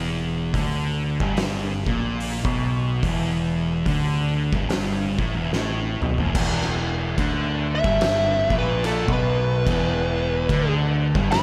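Brooding and heavy, this stoner and doom metal excerpt crawls at 72 BPM in E minor with a swung feel, as two thick fuzz guitars pick a low riff in the background over a growling, overdriven fingered bass with tube saturation, while an oversized low-tuned drum kit, up front with a fat snare and punchy kick, enters at 0.5 seconds. After a drum fill, a very quiet, double-tracked fuzz guitar joins the riff at 6.3 seconds, and at 7.8 seconds a dark, compressed fuzz lead guitar with digital delay comes in up front for the solo. The mix is dry, with little reverb.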